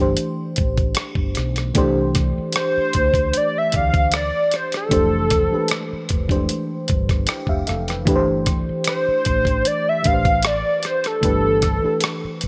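A light reverb gives this relaxed neo-soul R&B excerpt a soft, gently spacious sound, with the drums, electric piano and lead sitting up front and the bass tucked in the background. At 76 BPM in 4/4, with a slight swing on the sixteenths, a mellow FM electric piano with chorus lays down round chords with a fast attack and a gentle decay over Gsus24, Cadd9 and Fmaj9, adding a brief fill between 6.9 and 8.1 seconds. Beneath it, a woody fretless electric bass supplies a dark, punchy low end, while a compressed, gritty sampler-style drum kit enters at 0.2 seconds with hi-hat, rim click and a thumpy kick. At 2.6 seconds a hollow square-wave lead takes the melody, its sustained tone coloured by ring modulation, vibrato, chorus and a slapback echo. The passage stays in a single unhurried section from start to finish, cut from a longer piece.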